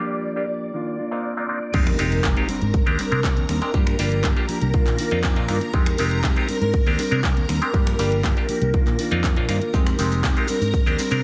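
Filtered disco house at 120 BPM in F dorian, sensual and nostalgic, opening on a twangy, nasal clav, a swirling vintage string machine with chorus and phaser, and a dark, clean guitar riff, all pumping under a low-pass filter through a dreamy plate reverb. At 1.7 seconds the drop arrives with a punchy fingered bass, an overdriven kick up front, a house kit of hi-hat, handclaps, finger snaps and crash, and a background impact, while maracas slip in at 9.7 seconds over cycling chords from Gm7 through Cm11 and Fm9 to Abmaj9#11.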